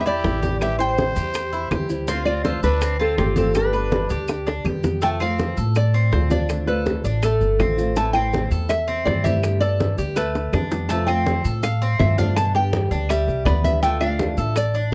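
A nylon-string guitar leads this relaxed, sunny slice of Cuban son and guajira, its fingerpicked melody carrying a slapback echo over a thumpy, gut-strung upright bass up front and the metallic double-string arpeggios of a tres, while a raspy, growling trumpet plays a second line until 4.6 seconds. A small, boxy second nylon-string guitar fills in the accompaniment, and congas, tight high-tuned bongos, woody claves and grainy maracas sit in the background. The sound is dry and close, like a 1970s studio recording, moving through chords such as Am7, Dm7 and G.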